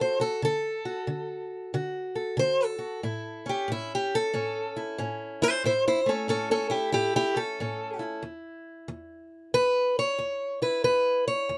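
A loping swung feel in four sets the pace for this short acoustic country blues fragment, cut from a longer piece, with a laid-back, swaggering mood. A single fingerpicked steel-string acoustic guitar carries the whole thing alone from 0.0 to 11.6 seconds, its parlour-sized tone bright and boxy, with finger squeaks audible along the strings. The chords move from D to A at 3.0 seconds, then settle on an E5 at 8.2 seconds, giving the passage a relaxed, strutting turn. The guitar sits up front, captured by close, detailed microphones that catch every pluck, with a touch of light reverb around it.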